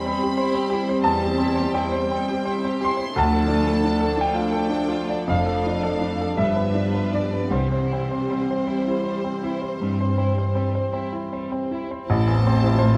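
Swaying in a flexible 12/8 with generous rubato, this lush, lyrical romantic movement for piano and orchestra is a short passage cut from a longer piece. A clear, natural baby grand piano carries the melody up front with a short sustain, ranging from deep bass notes to a bright upper register. A smooth, even violin section also carries the melody, between C5 and C6, while a second, richer and more focused violin section sings a lush second line beneath it. A woody viola section supplies background accompaniment, and a mellow, distant French horn section holds roomy sustained chords. An expressive cello section enters on the bass at 1.0 seconds, joined by a dark double bass section at 3.2 seconds, as the harmony moves from C/E through Dm and G7 to C, turning toward Am near the end under light reverb and close, detailed miking.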